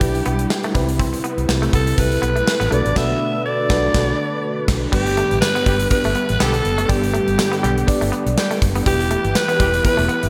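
A gently swung 4/4 groove at 122 BPM drives this dramatic, nostalgic slice of 1980s-style pop, with a punchy gated drum kit of medium-tuned snare, bright cymbals and tambourine up front beside a round, foam-muted fingered bass, while a raspy, gritty alto saxophone carries the melody with vibrato and scooped notes through an analog delay. Underneath, a glassy, bell-like FM electric piano with chorus comps over the chords from Em7 and Cmaj7 to G, a phased sawtooth string machine of violas holds mellow sustained chords in the background, and a twangy, direct-recorded clean guitar riff enters at 0.3 s, bathed in lush chorus and delay. A band accent lands from 3.0 to 4.9 s, warm horn stabs with light vibrato join at 5.7 s, and the whole mix is soaked in a dreamy hall reverb.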